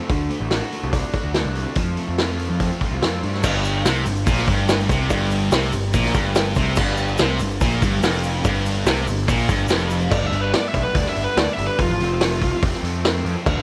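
Classic rock with a swaggering, sunny mood, this excerpt cut from a longer piece moves at 144 BPM in a straight 4/4. A crunchy, double-tracked overdriven guitar riff sits in the background from the start, while a bright, punchy fuzz bass with overdrive and a vintage acoustic drum kit come in almost at once, the kit up front with dark cymbals, a tight kick, a medium-tuned snare and a gritty, saturated tone with a rolled-off top. At 3.4 s, as the harmony moves from D and F onto a lingering Fsus24, a second bright, distorted guitar plays its own riff and a grainy tube shaker joins in the background, both dropping out at 10.1 s. A bluesy lead guitar then takes a short solo, its dark, distorted tone carrying a slapback echo over G and F chords. Light studio reverb gives the whole band a sense of a real room.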